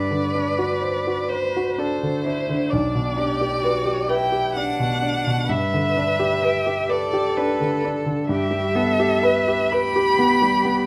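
Tender and warm, this slow, romantic piano trio excerpt in G major drifts at 64 BPM in 3/4 with a gently rubato feel. A clear, up-front violin sings the melody with vibrato, while a rich, focused cello carries a second line beneath it, and a grand piano with a smooth, vintage tone and short sustain supplies the accompaniment. Close, detailed microphones capture the trio in a moderate recital hall reverb throughout its 10.9 seconds.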